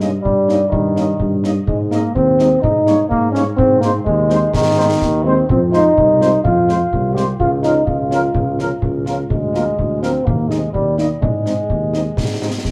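A roomy, distant sound with wet spring reverb frames this spirited, rousing military-style march for wind band in Ab major at 126 BPM in a straight 2/4, where a clear, punchy euphonium sits up front with the second line over a dark trumpet section carrying the melody in the background, a horn section with light vibrato and a smooth top adding accompaniment, a tuba laying down the bass, and close, dry concert snare and bass drum with dark cymbals driving the beat, all cut from a longer piece and moving through chords from Eb7/G to Ab, Fm7 and Bb7/D before landing on Ab at 11.2 seconds.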